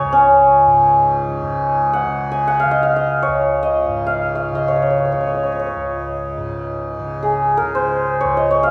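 A bright, ringing santur carries the melody up front across this short passage of meditative, devotional Hindustani classical music in free time, set in raga bilaval on Db, while a mellow, buzzing tanpura drone sounds beneath it for the full 8.7 seconds, all bathed in the wet reverb of a church or concert hall.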